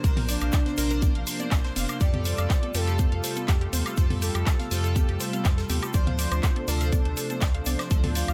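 Progressive house at 122 BPM, euphoric and expansive, moves over Bbadd9, Fadd9 and Dm7 as a punchy, up-front electronic kick drives a house kit of handclaps, bright hi-hat and woodblock, with a brushed jazz kit, a grainy egg shaker, and electronic toms and congas sitting in the background. A deep, saturated sub bass, a background analog pad with soft-attack sustained chords, lush detuned sawtooth pluck arpeggios and glossy chorused polysynth stabs with a filter sweep all pump with sidechain, while the pluck and stabs carry digital delay. A velvety synth lead with vibrato, chorus and delay enters at 0.3 seconds, and the mix stays dry in this excerpt from a longer track.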